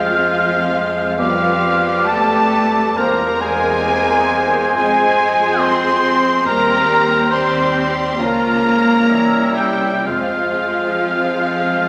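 Solemn and elegiac, this short excerpt from a slow romantic orchestral movement in F minor drifts with rubato at about 58-71 BPM, as a lush background violin section carries the melody beneath a more present second violin line, a very quiet hollow flute section, a mellow clarinet and a prominent cor anglais with light vibrato, while a clear bassoon and a close, expressive viola section accompany, a dark trumpet adds stabs, focused cellos and double basses anchor the bass, and a mellow French horn section sustains chords from 1.2 to 10.5 seconds, all bathed in a reverberant recital-hall acoustic before coming to rest on Fm after a C7b9.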